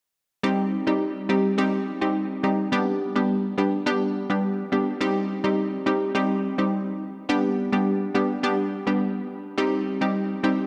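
A straight 4/4 afrobeats pulse sets a mellow, smooth mood in this short fragment from a longer piece, carried entirely by an analog pluck accompaniment from 0.4 to 10.7 seconds. The pluck is round and bright, sitting up front with a detuned, chorused shimmer, a fast attack that then decays, a noise layer and a filter sweep as it alternates between C minor and G. A long plate reverb bathes the whole mix in a dreamy wash.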